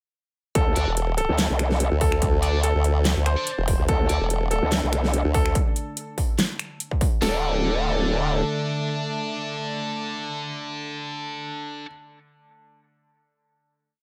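A growling, saturated bass anchors this short, chaotic and menacing heavy wobble dubstep piece at 144 BPM, set in a half-time feel with a light swing, its modulated phrases changing wobble speed from 0.6 s. A second, sawtooth wobble bass with a formant sweep sits just as far up front, answering the first until it stops at 5.5 s. Two layered electronic drum kits drive the drop with studio ambience: one has a distorted kick, a huge snare and metallic hats, and the other adds finger snaps and handclaps. Above them, a clear, intimate grand piano repeats a riff, with audible action noise and dub echo. A bright, double-tracked high-gain guitar adds sparse, echoing power-chord stabs. An evolving, warbling wavetable pad with phaser and sidechain pumping enters at 3.9 s and holds through the final chord with the piano and guitar, and the mix sits in a digital ambience.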